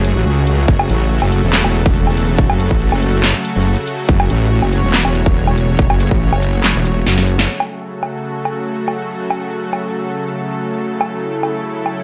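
Chaotic and aggressive, this heavy wobble dubstep fragment opens straight into a drop with a half-time feel. Up front, a wobble bass blends detuned sawtooth and sine layers, saturated and compressed with chorus and overdrive, yet mellow at its core. An overdriven electronic kick, re-recorded in a small room, hits from 0.7 to 6.2 seconds, while a big-room dance drum kit of handclaps, woodblock, metallic hi-hat and snare drives the whole stretch, kick and snare both punchy. Behind them, a lush, bright supersaw pad holds sustained chords with a slow attack and long release, pumping under sidechain. A drum fill and a band accent close the drop, and at 7.5 seconds the bass falls away, leaving pad and kit in light digital ambience.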